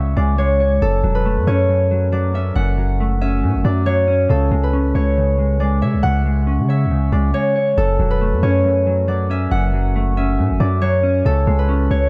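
Dark and menacing, this short excerpt cut from a longer drill track moves at 138 BPM in 4/4 with a half-time feel. A Celtic harp carries the melody, its acoustic, fingerpicked notes ringing up front in a warm tone. Beneath it, a mellow electric guitar supplies clean, compressed accompaniment with a shadowy color, dressed in lush chorus. A long, sustained 808-style bass anchors the low end with a deep, sine-like tone, striking with a fast attack before decaying. All three parts play throughout, over a brooding progression that circles between C#m and F#m, with the second section beginning at 7.8 seconds in a studio ambience.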